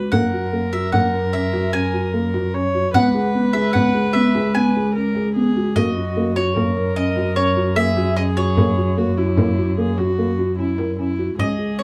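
A dark viola, a felt-muted upright piano and a muted cello open this pensive, restless cut from a longer chamber piece, set in an uneven 7/4 at 149 BPM with a straight feel. The upright piano supplies mellow, intimate arpeggios through its thick felt, while the cello holds the bass, bowed con sordino by one player with a veiled tone, light vibrato and portamento. The viola carries a second line, bowed sul tasto with an airy, floating purity and a soft attack, sitting lower in the blend than the other parts. From 0.1 s a picked mandolin takes the melody, its double strings giving a round, acoustic voice, and a small, bright frame drum played with soft hands keeps the percussion. The harmony moves from F#7 to C#m7 and back to F#7. A moderate studio ambience places the ensemble further back in the room, and the passage ends at 11.8 s.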